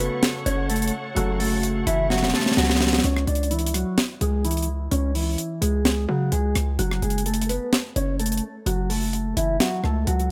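This eerie, menacing hip hop and trap cut, taken from a longer piece, moves with a half-time feel. A clean, compressed electric guitar carries the fingered melody throughout, up front and darkened by spring reverb and a low-pass filter. At the opening, an intimate baby grand piano with audible action noise sits in the background while a lush, veiled string section plays bowed, con sordino chords with vibrato and a soft attack. A punchy 808-style bass with a sine body, a noise layer and a fast, decaying attack hits heavily beneath, and a dry, airy acoustic drum kit with a high-tuned snare, hi-hat and rim click enters at 0.2 seconds and keeps a polished groove up front. After a drum fill at 2.1 seconds, the strings drop out at 3.0 seconds and the piano at 3.1 seconds, leaving guitar, bass and drums as the harmony shifts from F#m to C#m at 3.0 seconds and returns to F#m at 6.8 seconds, all in a light reverb.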